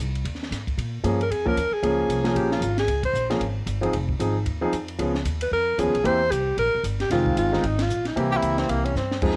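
A brisk swung 4/4 at 227 BPM drives this smoky, cool small-group jazz excerpt in F minor, where woody pizzicato upright bass and a compact cocktail kit with a high-tuned snare, punchy kick and rolled-off top support a deep-bassed concert grand piano, while a mellow alto saxophone carries the melody with vibrato, subtone and scooped notes and a breathy, whispered tenor saxophone adds an intimate second line from 8.3 seconds, with cassette-tape colour on the drums, piano and tenor, plate reverb on both saxophones, a band accent at 7.8 seconds and a drum fill at 9.0 seconds.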